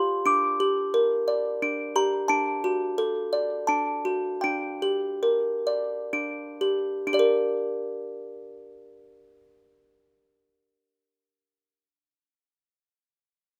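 Dreamy and gentle, this short piece of children's music is cut from a longer work and moves in a three-beat metre in a minor key. A lone music box carries the melody with a delicate, tinkling, plucked tone, bright and up front with the character of a small box, moving through G minor, D and back to G minor as the pace slows between 2.3 and 7.1 seconds. The sound is dry and outdoors, free of room ambience, and the music box falls silent at 11.4 seconds, before the second section closes.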